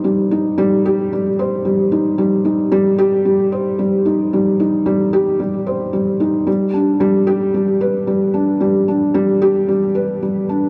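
In a straight 4/4 at 112 BPM, this luminous, hopeful electronica fragment features a lone felt-muted upright piano playing from G3 to C5 across its full 10.7 seconds. The piano sits up front with a mellow, intimate tone, its thick felt and audible action noise giving a soft, close character. A huge ambient reverb with a 6.7-second decay surrounds it, set within a dark, warm production.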